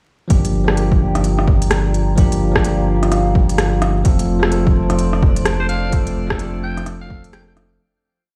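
Future garage at 128 BPM in G minor with a 16th-note swing, wistful and ghostly, where a bell-like tine electric piano with delay, a warbling tape-like pad and a round sub bass all pump, joined by a muffled two-step electronic kick and a skittering kit of smooth hats and rim clicks, over a Gm7-to-F groove that gathers a glassy drifting texture at 4.6 seconds and a raspy, gritty alto saxophone at 5.6 seconds before fading out by 7.8 seconds, all heard as if played through a big sound system in a bare stone room beneath vinyl crackle.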